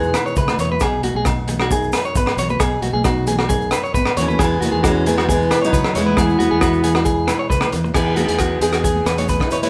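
A straight 4/4 groove at 134 BPM drives this sunny, danceable highlife excerpt in E major, where a crunchy, saturated breakbeat kit with a punchy kick sits up front beside a clean, compressed electric guitar playing arpeggios, a round fingered bass, a dark fingerpicked nylon-string guitar in the background, grainy maracas, ringing agogo bells and very quiet high-tuned congas, while a bright picked steel-string acoustic guitar carries the melody from 4.2 seconds and a breathy, whispered trumpet adds a soft second line until 7.5 seconds, all in a lightly reverberant room as the harmony moves from E to Emaj7.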